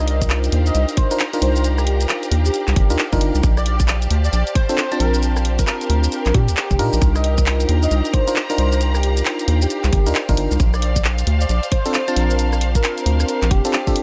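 Bouncy and late-night, this swung two-step UK garage passage at 134 BPM in C dorian drifts between Cm11 and Bbmaj9, with a tight, up-front electronic kick and a tape-tinged garage kit of handclaps, hi-hat, rim click and shaker alongside a rubbery, resonant square bass, while glassy, bell-like FM electric piano stabs with chorus and delay sit beside an airy, dreamy lead melody, and a very quiet, silky string machine and a lush studio string section with sidechain pumping fill out the texture in a fragment cut from a longer piece.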